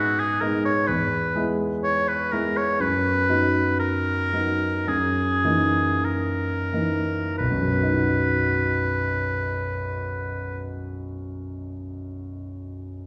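A clear, classically styled oboe sings a tender, serene melody in this romantic duo, drawn from a longer piece, with a concert grand piano accompanying in deep, open bass tones that ring with long sustain. The music moves in a free, rubato 4/4, slowing through its first 7.4 seconds before settling onto a calm new phrase; the oboe falls silent at 10.7 seconds and the piano carries on alone until 13.1 seconds. Both instruments sit up front, while a wet recital-hall reverb lends the sense of hearing them from further back in the room.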